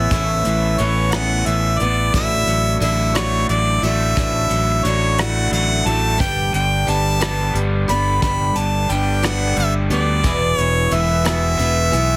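A clear, pop-style harmonica carries the melody up front in this hopeful, jangly slice of folk rock and heartland rock, set in an unhurried 6/8 with a straight feel. Beneath it, a woody, boxy acoustic guitar with old strings picks out a swing-style accompaniment, while a crunchy, double-tracked overdriven electric guitar plays a bright picked riff in the lower register. A round, dark fingered electric bass sits up front, and a soft brush kit in a small room adds hi-hat, a tight kick and rim clicks from 0.1 seconds. The harmony moves from Aadd9 to Dadd9/A, then to G at 6.2 seconds and E at 10.2 seconds. Light reverb and heavy multiband compression give the whole a heavily compressed radio sound, and the piece is cut from a longer work.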